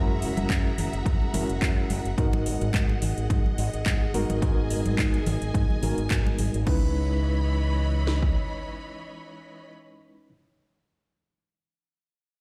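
Sensual and cosmic, this nu-disco fragment floats on a reedy electric piano with tremolo and tape echo and lush, vibrato-rich bowed strings pumping softly underneath, alongside a bright envelope-filtered electric bass with tube saturation, an overdriven electronic kit of punchy kick, cracking snare, metallic hi-hats, handclaps and crash re-recorded in a large room, and damped congas in the background, with the hats, claps and crash dropping out at 6.8 s and the kick, snare and bass at 8.3 s, all set in a big, reverberant studio space.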